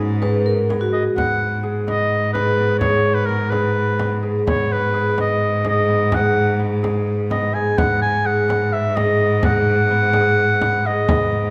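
Contemporary chamber music in a restless, hypnotic 7/8, this short excerpt opens with a dry, metallic vibraphone line alongside harp and cello, ringing for barely a second before the clear, softly attacked oboe takes the melody at 0.9 seconds, sitting up front with a smooth top. Beneath it, a concert harp rings out fingerpicked arpeggios, a bowed cello holds a focused bass note with vibrato, and a deep frame drum struck with hard hands stays in the background. The ensemble sits in a recital hall with a wet reverb.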